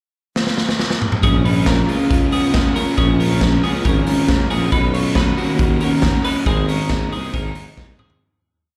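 A raw garage drum kit opens at 0.4 s with a fill, then sets a dance-floor indie beat with off-beat open hats at 138 BPM in straight 4/4, its boomy kick and medium-tuned snare up front, gritty and saturated in a pumping stone room. From 1.2 s this breezy, nostalgic jangly indie pop piece moves through a pre-chorus over Bbm7, Cbadd9 and Abadd9: an overdriven garage guitar strums barre chords in eighths, a bright, twangy twelve-string electric guitar rings out a picked figure doubled in sixths with spring reverb, tape echo and slapback, and a mellow tuba with vibrato carries a rounded, melodic bass line. The whole band sounds like a live gig heard through the venue's PA in a club, and it fades out from 6.5 s.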